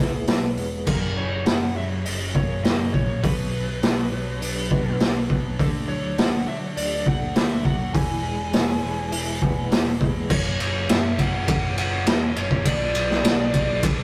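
Quiet-loud alternative rock in F# mixolydian at 102 BPM in a straight 4/4, this cathartic, anthemic fragment is cut from a longer piece and captured as a rough rehearsal-room recording with tube saturation and light reverb. A raw garage drum kit sits up front from 0.3 seconds, its boomy kick, medium-tuned snare, hi-hat, ride and crash sounding gritty and saturated with a rolled-off top. An overdriven picked bass growls and punches beneath a smooth overdriven lead guitar melody that runs from G#4 to G#5, while a twangy, slightly broken-up guitar through a small old amp plays tremolo-treated arpeggios in the background until 10.3 seconds. A tight distorted guitar riff enters at 0.9 seconds behind the others, and the chords move through E, F#, Bm, D and E before returning to F# and Bm. At 10.3 seconds a new section begins, where a very quiet high-gain distorted guitar adds a second riff underneath.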